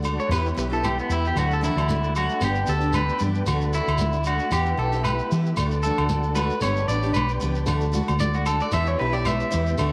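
Highlife guitar band music at 114 BPM in D major, joyful and lightly swung, cycling through Em, D and G, with a round, punchy hollow-body bass up front, a twangy, slightly broken-up electric guitar playing arpeggios through tape echo from 0.2 seconds, smooth tonewheel organ chords on a slow rotary speaker with chorus vibrato, a bright acoustic guitar accompaniment, grainy shekere, and ringing agogo bells and high-tuned congas in the background, all in a moderate plate reverb, in a short cut from a longer piece.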